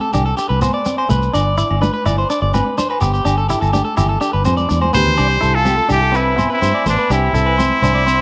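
A straight 4/4 groove at 125 BPM drives this carefree, joyful highlife guitar band excerpt in C major, with a round, up-front fingered bass, a clean, twangy electric guitar on accompaniment, and a picked guitar at the edge of break-up spinning arpeggios through slapback echo, while a grainy shekere joins ringing agogo bells and high-tuned congas that sit in the background. A drum fill at 4.6 seconds leads into the second section at 5.2 seconds, just after a brilliant, nasal trumpet with straight mute takes the melody at 4.9 seconds and an alto saxophone with vibrato adds a second line behind it. The chords move from Csus2 to G and then Cadd9, all bathed in a moderate spring reverb.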